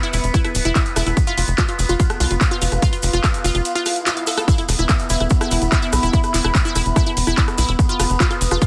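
An intense, alien psychedelic trance excerpt at 145 BPM opens with a bright, wave-folded drone, an airy breathy pad in the background and a detuned unison pluck riff run through cassette tape and delay, all three pumping against a heavy, tape-warm kick that lands up front at 0.3 seconds beneath a tight, nasal sequencer bass, techno handclaps, warm hats and rim clicks, and distant grainy maracas, before a very quiet swell leads into the drop at 4.5 seconds.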